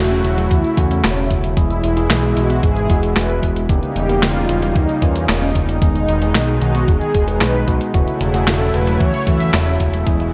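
Synthwave at 113 BPM in a nostalgic, uplifting mood, this excerpt sets a dark, brassy synth brass melody with chorus, vibrato and digital delay over a lush, nasal detuned pad that pumps under sidechain, a round thumb-piano-like FM pluck arpeggiating in the background, clean tine electric piano stabs, a fat, thick analog bass up front, clean 12-bit drum-machine handclaps, hi-hat and snare, and a thumpy electronic kick entering at 0.5 s, all framed by light reverb and bright 1980s-style digital production over a chord cycle built on an E pedal.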